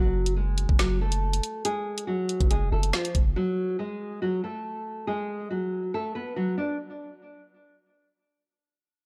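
A half-time drill groove in 4/4 drives this dark, menacing hip hop fragment, cut from a longer piece, its electronic kit of knocking kick, wooden-toned snare, warm hi-hats and finger snaps sitting up front. Beneath it, a deep, sine-like 808-style bass holds long notes that strike with a fast attack and then decay, also placed close in the mix. Over the top, a fingerpicked nylon-string guitar carries the melody in a classical manner, its old strings giving a woody, aged character that a low-pass filter softens further. The harmony rests on a single brooding minor add-nine chord until the bass and drums drop away by 3.4 s, leaving the guitar alone until it stops at 6.8 s. The sound is dry and intimate, with little reverb around any of the parts.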